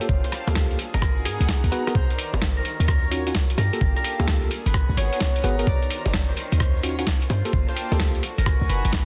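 Soulful, skippy two-step UK garage at 129 BPM with a swung 16th-note groove, where a gritty, pitched-down sampler kit of bongos, hi-hat, rim click and a medium-tuned snare with soft clipping sits alongside a thumpy, tape-warm electronic kick and a punchy, tight 808-style bass, while an egg shaker adds grainy brightness, a mellow fingerpicked concert harp rings out the melody through digital delay, a clean tine electric piano stabs until 8.2 s, a silky, very quiet vintage string machine holds chorused chords, and a reedy, gut-string studio section pumps under sidechain across a Gm9, Abm9, Cm9, Ebm9 cycle, all in light digital ambience with a dense, heavily limited modern master.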